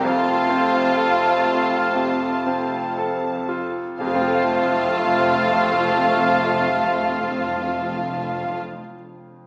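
A passionate, lyrical romantic classical passage for piano and orchestra, cut from a longer piece, moving with a free rubato that slows through its opening 4.0 seconds. A clear, long-sustaining baby grand carries the melody in the background alongside a very quiet violin section, while a warm solo cor anglais, an airy silver flute, a barely audible clarinet and a second violin line weave secondary lines over a lush viola section, a present bassoon, and a very quiet cello section and background double basses below. Mellow French horns and trombones sustain chords, clear trumpets add stabs, and close, dry timpani struck with hard mallets enter at 4.0 seconds, all set in a wet scoring-stage reverb with a small-speaker character.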